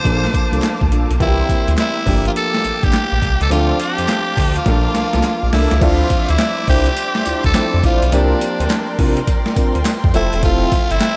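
Bouncy and upbeat, this short cut from a longer R&B track rides a swung new jack swing groove in 4/4. A raspy, breathy tenor saxophone carries the melody with a present, vibrato-laden tone, its lines treated with slapback echo and delay, while an intimate concert grand piano with audible action noise and deep bass plays accompaniment under its own slapback echo. Behind them, a lush, distant studio string section holds bowed chords, and a dark, round synth brass with chorus and slapback echo adds stabs in the background from 0.5 seconds. The gritty, overdriven boom bap sampler-style drum kit sits up front with a thumpy kick, medium-tuned snare, hi-hat, handclaps, tambourine and crash, and a drum fill runs from 4.7 to 5.8 seconds. A smooth, detuned sawtooth and square-wave synth bass anchors the low end, a barely audible group handclap adds crisp human texture, and light reverb with studio ambience frames the chords as they move from Bbmaj7 through C7, Gm7, Dm7 and back to Bbmaj7, then on to Dm9, C9sus4 and Fmaj7.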